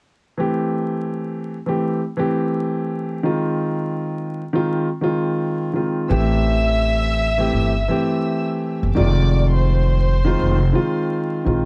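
A swung, moody and reflective hip hop groove opens with a mellow, tape-worn grand piano alone, moving between Am7 and Fm7, until at 6.1 seconds a thumpy, woody pizzicato upright bass sits up front and a close, intimate chamber violin section carries the bowed melody with light vibrato and a soft sul tasto attack, all under light reverb and a dusky vinyl-crackle production in this short fragment of a longer piece.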